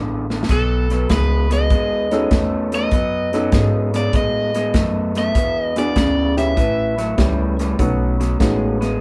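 A band playing live in one small room with a moderate reverb gives this rollicking, soulful electric blues shuffle at 99 BPM a live sound, swinging in 4/4 over B7, E7 and A7 chords. A slightly broken-up, lo-fi electric guitar riff from a small old amp sits up front beside a woody pizzicato upright bass, while an airy acoustic drum kit with a punchy kick and medium-tuned snare opens with a fill at 0.2 seconds. From 0.5 seconds an overdriven, picked semi-hollow guitar carries the melody, and at 2.1 seconds a dark, mellow, slightly detuned vintage upright piano adds accompaniment.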